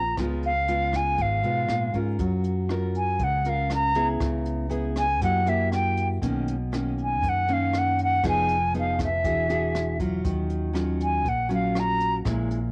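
Bossa nova in F# major at 119 BPM, sunny and breezy, heard in a short cut from a longer piece with light studio reverb and the soft color of a home cassette recording. An airy, up-front silver concert flute carries the melody with gentle vibrato and a soft attack, while a fingerpicked nylon-string guitar in classical style sits close beside it, both carrying a cassette-tape tint. Beneath them, a round, amped fingered electric bass anchors chords such as F#maj7, Bmaj9 and E9, and a dark, smooth brush kit with a boomy kick, hi-hat and rim click joins at 0.2 seconds, its top gently rolled off.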